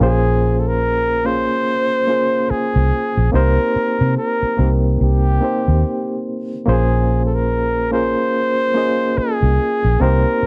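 R&B with a smooth, introspective mood, this short clip from a longer piece moves in 4/4 with a gentle swing on the sixteenths. A breathy flugelhorn carries the melody throughout, close-miked and intimate, with a soft attack, light vibrato and a whispered, pop-style delivery touched by slapback echo. Beneath it, a reedy, barky electric piano plays the accompaniment, lightly overdriven and pulsing with fast tremolo through its built-in speakers. A vintage muted fingered electric bass sits prominently in the mix, its foam-muted tone dark, round and punchy. The harmony moves from Bbm9 to Cm7 at 3.3 seconds and back to Bbm9 at 6.7 seconds. The sound is dry and close, with little reverb, in the manner of a 1970s studio recording.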